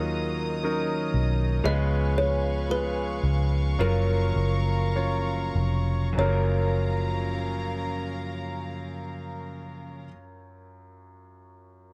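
Tender and heartfelt, this slow pop ballad in F# major moves in a straight 4/4 at 47-62 BPM, easing back in tempo over its first 6.2 seconds before settling into a second passage. A clear concert grand piano sits up front with deep bass, long sustain and the intimate sound of its action, carrying the accompaniment through to 11.9 s. A kalimba plays the melody in the background, its woody thumbnail plucks short and smooth. Around it, a soft-attack string section holds floating sul tasto chords, a direct-recorded clean electric guitar adds compressed, picked arpeggios farther back, and a foam-muted fingered electric bass stands forward, round and punchy. The harmony moves from D#m7 to C#7 to F#maj7, and the whole cut has the dry, close feel of a 1970s-style studio with a small room reverb.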